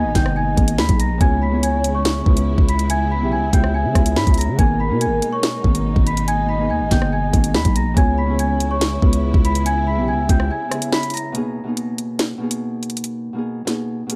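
A half-time drill groove at 142 BPM in 4/4 drives this tense, menacing hip hop excerpt in G# harmonic minor, with an up-front, tape-warm electronic kit of knocking kick, sharp snare, rim clicks and warm hats under a growling, buzzy 808-style bass that drops out at 10.5 seconds. A large celesta carries the bell-like, delicate melody with digital delay, shadowed by a soft, round octave-layered synth lead treated with chorus, phaser and delay, while dark, lush bowed strings sustain chords in the background over G#madd9 and C#m7. The celesta, synth and strings fall away at 11.3 seconds, leaving the thumb-plucked Celtic harp ringing alongside the drums until 14.2 seconds in a light studio reverb.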